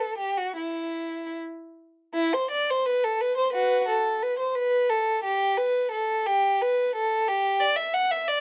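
A lone bowed violin, close and up front with a soft attack, vibrato and expressive portamento, carries this solemn, introspective baroque-style suite movement in E minor, moving in a rubato 4/4 at around 73-92 BPM between E4 and F#5 under light reverb, in a brief cut of 8.4 seconds from a longer piece.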